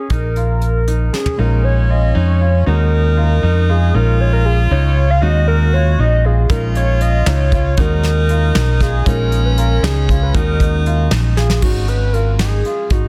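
Counted in a straight 5/8 at 234 BPM in eighths, this tense, intricate progressive instrumental in Bb minor, cut from a longer piece, sets a hollow, woody square lead with chorus over arpeggios from a smooth, vintage concert grand and an up-front, amped fingered electric bass, while a soft brush drum kit with a fat, lightly clipped snare drops away after an opening fill and returns at 6.5 seconds, and from 1.4 seconds a jazz-style alto saxophone with scooped notes and light vibrato adds a second line alongside a dark, mellow baby grand tucked in the background, the mix dense and heavily limited with light reverb.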